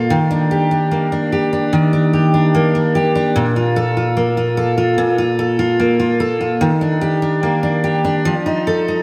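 Heartfelt and hopeful, this nine-second pop excerpt in Bb major at 74 BPM features a solo picked steel-string acoustic guitar, full-bodied and up front with audible finger squeak, dressed in lush chorus and analog delay and drifting over Ebmaj7, Bb5 and F7 chords in a dreamy mix soaked in a long hall reverb.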